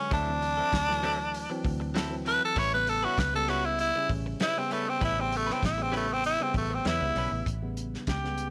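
A raspy, gritty tenor saxophone opens this laid-back, rollicking soul blues at 98 BPM in A mixolydian, its up-front, punchy solo carrying vibrato and a slapback echo, while a clean tine electric piano played through a combo amp accompanies over D9 and A9 chords. A fingered electric bass with a dark, round tone and transformer saturation joins a tight soul drum kit of hi-hat, kick and snare with a pumping room sound and rolled-off top. A bright, compressed clean guitar adds picked stabs through a phaser in the background until 7.4 s, and the saxophone solo runs to 7.5 s, where a brief new section begins, set in light reverb and studio ambience.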